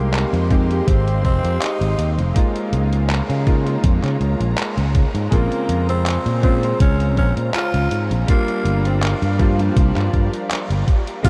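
A dreamy, hazy mix soaked in a huge ambient reverb frames this melancholic vaporwave excerpt, cut from a longer piece and moving at 81 BPM in 4/4 with a light swing on the sixteenths. A raspy, gritty tenor saxophone carries the melody in a jazz style, with a growling tone, light vibrato and scooped notes, its lines trailed by tape echo. A vintage electric grand piano with a clangy low end and long sustain plays the accompaniment through analog chorus and a diffuse ambient delay. Behind it, a lush symphonic string section holds bowed chords with expressive vibrato and portamento. Up front, a bright, growly fretless electric bass, amped and tube-saturated, sustains beneath the harmony of Fm7, Db6, Bbm9 and Gm7. A detuned 8-bit drum machine enters at 0.1 seconds with cabasa, handclaps and hi-hat, and a thumpy, sampler-style kick drum joins at 0.5 seconds, both re-recorded in a small room.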